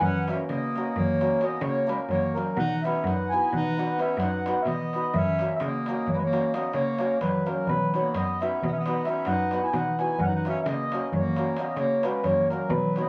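A moderate studio reverb frames this restless, bittersweet excerpt of Balkan wedding-band folk in 11/8. A reedy, up-front accordion carries the melody over a distant, roomy clarinet second line, a clear bowed cello bass with vibrato and a crisp metal-shell darbuka set back in a large room. A shimmering hammered dulcimer joins at 0.3 s, and the tempo speeds up through all 13.1 seconds.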